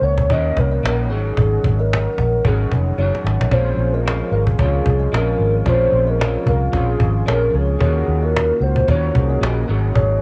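A warbling, detuned synth lead with tremolo, lush chorus and tape echo carries the wistful, hazy melody of this bedroom-pop excerpt at 112 BPM in Eb dorian, over a ringing, thumb-plucked kalimba in the background, a bright, twangy guitar slightly broken up through a small old amp, a dark, round, foam-muted bass and a woody, up-front cajon that plays a fill at 3.0 seconds, just before a soft, flute-like tonewheel organ with slow rotary speaker enters at 3.5 seconds, all within a small-room cassette home-recording sound.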